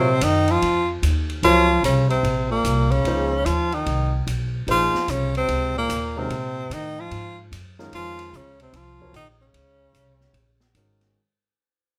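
Modal jazz at 148 BPM in 4/4 with a swung eighth-note feel, this intense, spiritual fragment of a longer piece sits on a Bbm11 chord in Bb minor, tuned to A4 = 436 Hz, and fades out across its full 11.2 seconds. A breathy, up-front tenor saxophone carries the melody with vibrato, soft attacks and scooped notes, while a close-miked bass clarinet with its own vibrato plays a second line below it and a warm grand piano supplies accompaniment. A woody, thumpy pizzicato upright bass sits up front, and an acoustic drum kit entering at 0.2 seconds adds dark cymbals, a high-tuned snare and a boomy kick in a natural studio room, all under light reverb.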